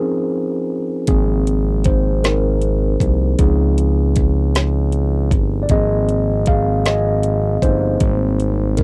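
A dry, close home recording with a cassette-tape character opens this brief cut from a longer slow R&B piece in 6/8, moving at 52 dotted-quarter beats per minute in Ab major with a tender, warm mood. A mellow, clean tine electric piano starts alone at 0.0 seconds and carries the lead through the whole passage, its direct tone sitting up front and tinted by tape. At 1.1 seconds an electronic drum kit joins with a knocking kick, woody snare and metallic hi-hats, along with a smooth synth bass whose sawtooth-and-triangle sound has a fast attack, long sustain, vibrato and an evolving quality. The harmony moves gently between Dbmaj7 and Ab6 before settling on Abmaj7 at 8.0 seconds. Bass, drums and piano all sit close and present in the mix, giving the short passage an intimate, unhurried feel.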